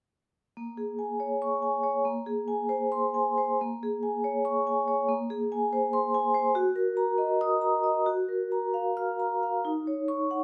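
Reflective and hypnotic, this brief contemporary classical excerpt for solo vibraphone in Bb minor moves in a rubato 7/8 at 255-294 BPM in eighths, its metallic, ringing tone struck with medium hard mallets and shimmering with fast motor vibrato, heard up front through close, detailed microphones and light reverb as it sounds from 0.6 to 10.4 seconds across Bbm7, Abadd9/Bb, Gb6, Gbmaj7 and Ebm7 harmonies.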